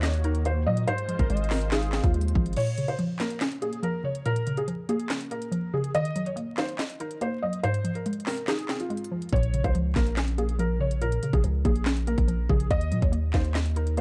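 Hip hop trap excerpt at 142 BPM in a half-time feel and Bb minor, melancholic and eerie under dark vinyl crackle, where a soft, felt-muted upright piano with audible action noise carries the melody over a bouncy, hollow square pluck and an up-front trap kit of hard-clipped kick, sharp snare, crisp hats, handclaps and crash, while a gliding portamento lead and a smooth analog pad sit briefly in the background at the start and the deep, sine 808-style bass drops out at 2.6 seconds before returning at 9.3 seconds.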